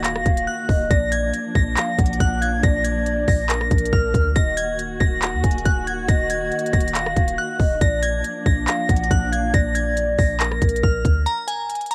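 Dry, like a home cassette recording, this brooding, menacing half-time trap cut sets a crystalline FM bell melody, washed in chorus, phaser and tape echo, over a hollow, warbling clarinet-like synth line, dark bowed strings holding lush chords, a deep, boomy 808 bass and an up-front kit of hard-clipped kick, crisp hats, claps and rim clicks, with only the bell and drums carrying into a brief break at 11.3 seconds.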